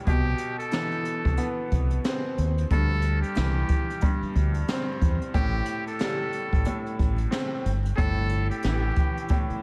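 A clear, woody upright piano with a cassette-tape tint opens this gritty, reflective boom-bap hip-hop excerpt at 91 BPM in A minor, joined almost at once by a round, deep dub fingered bass sitting up front, a dark jazz brush kit with a boomy kick and high-tuned snare, and a buzzy, breathy metal-muted trumpet carrying the melody through an analog delay, all over Cmaj7, D9sus4, Am7 and Gsus2 chords in a dreamy mix soaked in lush hall reverb and vinyl crackle.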